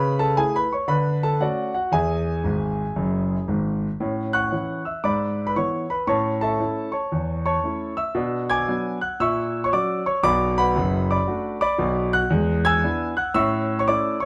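Playful and exuberant, this short stride piano passage is cut from a longer jazz performance and swings easily in 4/4. A solo concert grand carries everything, its clear, natural tone sitting up front with a deep bass reaching down to F#1 and a treble climbing to G#6. The opening phrase moves through A/C#, Dmaj7 and E before a piano fill from 2.4 to 4.0 seconds leads into a new section. From there the harmony turns toward Bm, F#7/A# and Bm7, then E7 resolves home to A at 13.3 seconds. A moderate club reverb gives the instrument a compact, intimate room around it.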